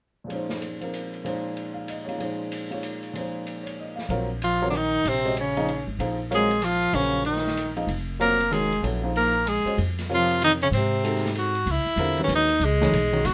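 A bright, up-front tenor saxophone carries the melody in this hypnotic, spiritual modal jazz excerpt in Bb minor, swinging at 190 BPM in 3/4, joined at 4.4 seconds by a bass clarinet second line with vibrato and scooped notes. Before that, an intimate concert grand piano with audible action noise and deep bass comps over Bbm11 alongside a dark, smooth acoustic drum kit of hi-hat, ride and medium-tuned snare with dark cymbals. A woody, thumpy pizzicato upright bass enters at 4.1 seconds, and the harmony moves to Ab7b9 and then C#m11 under light reverb.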